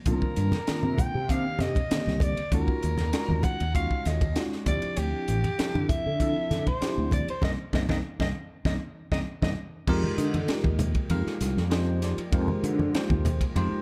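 A growling soprano saxophone leads this driving, slick slice of electric jazz fusion at 98 BPM in straight 4/4, carrying a raspy, gritty solo melody with vibrato and scooped notes that sits distant and roomy in the mix until 9.5 s. Beneath it, a bell-like tine electric piano treated with phaser comps through the m11 chords, while a punchy fretless bass, bright and direct with ensemble chorus, anchors the low end. The crisp drum kit sits up front, with a high-tuned snare, punchy kick, hi-hat, ride and crash in a small, pumping room, and congas with a thin, bright skin tick away close and dry in the background from 0.5 s. Around 7.4 s the band hits a run of accents, capped by an electric piano fill and a drum fill that lead into a new section at 9.9 s, where the harmony settles into F dorian on Fm11. There a lush, detuned unison pad with a slow attack enters very quietly under the piano, bass and percussion, all framed in light reverb and a dark, warm production.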